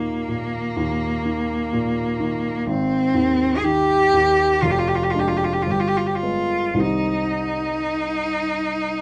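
Yearning and elegiac, this romantic classical duo for cello and grand piano unfolds slowly in C minor, moving between 52 and 64 BPM in 4/4 with a rubato feel that lets the phrasing breathe. A single bowed cello carries the melody from start to finish, its rich, smooth tone marked by vibrato and an even, up-front presence. Beneath it, a baby grand piano supplies accompaniment with a warm, natural sound, sitting lower in the mix than the cello. The harmony opens on Eb5, shifts to Abmaj7 at 2.7 seconds, and gathers tension through Ddim/F and G7b9 before settling on Cm at 6.8 seconds. Light reverb gives the pair a gentle sense of space across this brief nine-second fragment of a longer piece.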